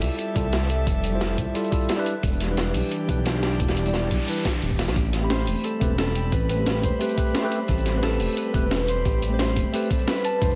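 Dreamy, rolling liquid drum and bass, cut from a longer piece, where a bright tine electric piano with tape echo and an airy, breathy chorused pad float over a smooth, gliding synth bass with tube saturation up front, two breakbeat kits (one gritty and sampler-style with a high-tuned snare, the other dark and rolled-off with high-pass filtering) and a thumpy electronic kick from 0.4 seconds, while a short noise sweep at 4.0 seconds ushers in a ringing, fingerpicked Celtic harp with digital delay from 5.0 seconds as the chords move from Fmaj9 through Em7 to Am9 in light small-room ambience.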